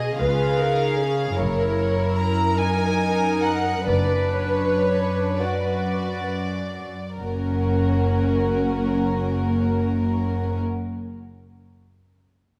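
Up-front cellos bowing softly sul tasto anchor this serene, slow romantic passage for string orchestra in F# major and 6/8, cut from a longer piece, as a pure, floating violin melody rides over a close second violin line and intimate violas with light vibrato, double basses joining at 0.2 s, the rubato pulse of 31-53 BPM in dotted quarters slowing until 7.2 s, where the harmony moving through C#, F#7 and Bm/F# comes to rest on F#, in a dark, warm production set in a resonant concert-hall reverb.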